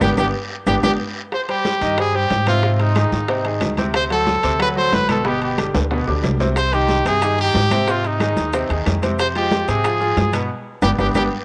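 A drum fill and a band accent open this driving, danceable salsa excerpt, with a brilliant, punchy trumpet up front carrying the melody with vibrato and scooped notes, while a bright, worn concert grand piano with deep bass supplies the accompaniment and a woody, thumpy pizzicato upright bass on gut strings anchors the low end. Behind them sit ringing congas, metal-shelled timbales, raspy guiro, very quiet tight high-tuned bongos and woody claves, plus grainy maracas that drop out at 0.9 seconds and return at 6.6 seconds. The trumpet and piano carry a cassette tape colour, the whole home cassette recording is bathed in moderate spring reverb, and further fills arrive near 5.7 and 10.5 seconds as the minor-key chords cycle.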